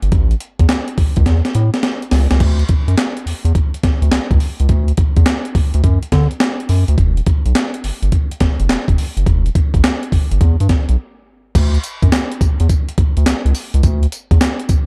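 Dark, lightly reverberant production with a faint mains hum frames this flirty, bouncy new jack swing R&B groove, where a gritty, compressed, sampler-style breakbeat kit with a thumpy kick, medium-tuned snare, hi-hat, handclaps, tambourine and crash cymbal sits up front with a small-room character beside an equally forward round, deep, nasal analog bass of fast attack and sustained notes, the swung feel punctuated by a drum fill at 1.3 seconds and a short break at 11.0 seconds.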